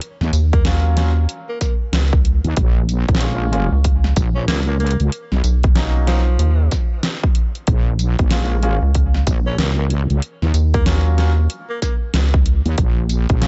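Riding a swung 94 BPM groove in 4/4, this swaggering, playful glitch hop excerpt is driven by a punchy, overdriven electronic kick up front alongside a layered dubstep kit of hi-hat, deep snare and tambourine, also overdriven and re-recorded in a small room. Two basses sit forward in the mix: a heavy, wobbling sawtooth bass with chorus and a rubbery, hollow square-wave bass with a bouncy filter pluck, both moving through Ebm7, Bbm7 and Bmaj7 changes. Above them, a breathy, close-miked tenor saxophone plays a jazz-style solo with vibrato and tape echo until 11.9 s, while a clear baby grand piano adds stabs with sidechain pumping and tape echo, all within a dark, warm production.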